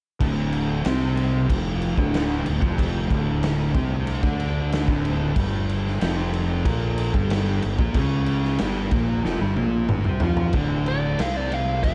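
Stoner and doom metal with a brooding, sludgy mood, cut from a longer piece. Two thick, fuzz-laden rhythm guitars sit in the background playing a dark, picked riff, while a growly overdriven fingered bass sits up front beside a raw garage drum kit whose punchy kick, medium-tuned snare, crashes and toms carry a rolled-off top and the sound of a bright stone room. From 1.8 seconds a deep, ominous drone of sustained chords rumbles very quietly underneath, its slow attack and long release adding shadow. The harmony moves from D minor to a tense Gm9b5 over F and back, with a drum fill leading into a short section where a compressed fuzz lead guitar enters up front at 10.9 seconds for a brief solo. A light reverb surrounds the mix.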